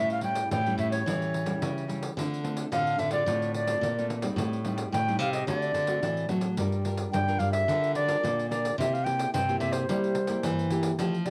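Lively and joyful, this short excerpt of samba and choro moves at 109 BPM in a straight 4/4. An airy, reedy concert flute carries the melody with a straight, tongued tone, sitting up front over two fingerpicked nylon-string guitars, one playing accompaniment chords and the other the bass line. One of the guitars is especially present, with fresh strings, a deep classical body and audible finger squeak, while the other keeps a full-bodied classical sound. A jingly pandeiro joins at 0.1 s, its compressed, saturated sound adding a gritty edge beneath the strings. The harmony passes through A7, Dm7, Am7b5, D7, Gm7 and C7, and the whole passage has the intimate character of a home cassette recording with moderate studio reverb.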